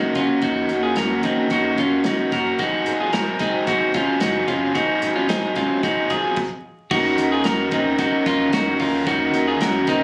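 A straight 4/4 pulse carries this breezy, bright jangly indie pop cut from a longer piece, with a picked, overdriven raw garage guitar and a compressed, slightly broken-up electric guitar playing arpeggios both up front from the start, a dark, round, foam-muted fingered bass beneath them, and a smooth acoustic drum kit with dark cymbals and a tight kick joining at 0.2 s, before a brief stop at 6.4 seconds, all heard as if caught on a phone in the room, with club reverb and vinyl crackle.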